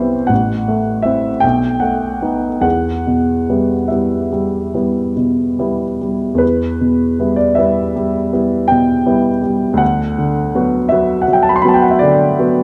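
Classical romantic nocturne for solo piano, wistful and mournful, unfolding slowly in a rubato 9/8 at 47-56 BPM in E minor. A baby grand piano, warm and present up front, spans A1 to C6 as the harmony moves through F#m7b5/A and B7 to Em at 2.6 s, later reaching Bm/D at 9.8 s. A moderate recital hall reverb and dark production frame this brief passage, which is cut from a longer piece.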